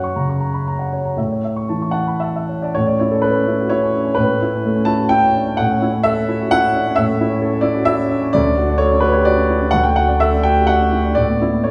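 A solo concert grand piano opens on an F# chord, then moves to A at 1.2 seconds in this intimate, wistful fragment of neoclassical minimalist piano, played rubato in 3/4 and spanning D2 to C#6. The piano's tone is warm and open, with a deep bass and long sustain, and it sits up front within a wet recital-hall reverberation. A new passage begins at 2.7 seconds, and the harmony shifts to D before resting on Asus2 at 11.2 seconds, where the piece is cut off.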